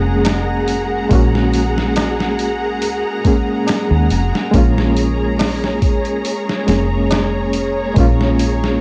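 A lightly reverberant home cassette recording carries this melancholic, cinematic trip hop fragment, where a reedy electric piano with fast tremolo accompanies and mellow, chorused string-machine cellos sustain chords moving from Gbadd9 to Bbm7 at 4.5 s over a dark, round fingered dub bass, while a gritty, pitched-down boom bap sampler kit with a thumpy kick sits up front from 0.2 s and a high-tuned, ringing tabla plays in the background until 7.3 s.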